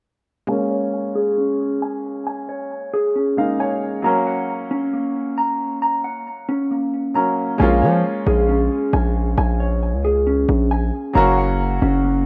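Hip hop in Bb minor at 135 BPM with a half-time feel, eerie and brooding, where a clear concert grand piano and a mellow, clean electric guitar playing arpeggios, both low-pass filtered and the guitar carrying delay, move through Bbm7 and Gb under a filter sweep and a brief piano fill at 3.2 seconds, before a saturated, aggressive 808-style bass with a fast attack and noise layer joins them at 7.6 seconds, all in a rough home demo mix with light small-room reverb, cut from a longer piece.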